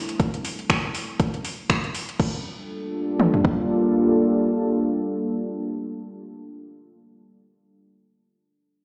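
A dark, moody deep dark ambient pad opens at 0.0 s with slow-attack, detuned sawtooth chords, a sub octave and ring-modulated shimmer under chorus and its own reverb, pumping to a sidechain in this smooth, warm deep house fragment at 120 BPM in G minor with a swung 16th feel. An overdriven, up-front electronic drum kit enters almost at once, with metallic hats, finger snaps and a crash over a deep kick and toms; the cymbal layer stops shortly after the harmony moves from Am7 to Gm9 at 2.2 s, while the kick and toms carry on until 3.6 s. The pad then sustains alone, and the whole piece sits in a stone-like echo chamber that sounds like a big system in a bare room heard through a small speaker.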